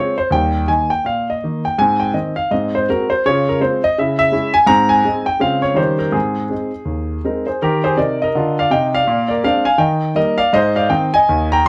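Playful and exuberant, this stride piano jazz excerpt swings along at 164 BPM in 4/4, with a solo concert grand carrying the whole performance from Eb2 up to Bb5. It moves through Ab major chords such as Dbmaj7 and Dbm before shifting to Eb major at 7.6 seconds, where a Bb9 leads back home. The piano sits up front with an intimate, natural tone, deep bass and audible action noise, framed by light reverb in a dark production.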